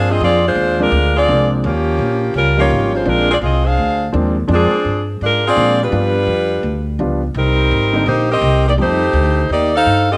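Big band swing at 168 BPM in 4/4, this brassy, swinging clip sits in Bb major with a moderate swing on the eighth notes. A tight saxophone section carries the melody, close-miked and up front, ranging from F3 up to F5 across the full 10.2 seconds. Underneath, an upright bass with gut strings is plucked pizzicato, its woody, thumpy tone anchoring the low end between Ab1 and Bb2. A grand piano comps intimately in the middle register with long sustain and audible action noise, dropping out at 9.0 seconds. The harmony moves through rich ninth and seventh chords, from Bb9 and Eb9 toward G7, Cm7 and a closing F9, all set in a small room with moderate echo-chamber reverb.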